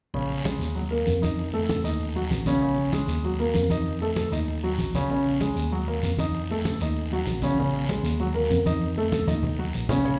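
A sophisticated, fiery stretch of Afro-Cuban jazz at a brisk 194 BPM in straight 4/4 opens at once with a warm, open baby grand piano up front, its long sustain voicing a looping Bbm7, Ebmadd9, F7, Ebm progression. Beneath it, a worn, slightly out-of-tune tine electric piano carries the bass line, lightly overdriven through built-in speakers, while bright, damped congas with a thin skin sit in the background and a raspy, dry guiro scrapes close by. The whole ensemble rings in a wet recital hall, and a fill near 9.3 s closes this fragment of a longer piece.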